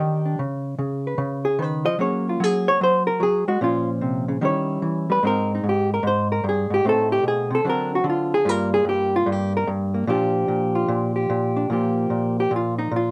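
Swinging and playful, this short solo jazz passage, cut from a longer piece, features a lone hollow-body electric jazz guitar, dark, clean and compressed, sitting up front in a moderate club reverb as its fingered lines move through rich chords like Db7sus2, Eb7b9 and D7alt before settling on Bb5 at 11.7 seconds.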